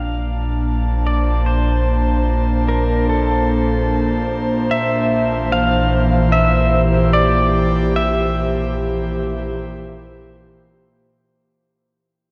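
An airy, breathy synth pad sits up front in this serene ambient excerpt at 73 BPM. Its detuned sawtooth and triangle tones, soft noise layer and chorus hold a single C over Bb chord with a slow attack and long release. Beneath it, a deep, rumbling drone on Bb1 lays down an ominous, dark floor with its own built-in reverb. A clean, twangy electric pedal steel guitar, played with fingerpicks and slide, carries the melody between A4 and F5; its compressed volume swells spread through a diffuse ambient delay. Pad and steel both fade in from the start, a fade-out begins at 6.9 seconds, and the steel drops away at 10.4 seconds, all inside a lush hall reverb and the warble of a worn old cassette tape with drifting pitch.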